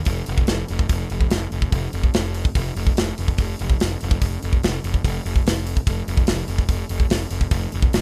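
An up-front modern studio drum kit drives this epic, heavy metal excerpt at 145 BPM in a straight 4/4, its tight kick, medium-tuned snare and hi-hat captured with an acoustic, small-room sound from 0.1 to 8.0 seconds. Alongside it, a picked electric bass played direct and amped sits down around F1, its overdriven fuzz tone warm and up front. The rough home demo mix has little reverb and is tuned to A4 = 439 Hz.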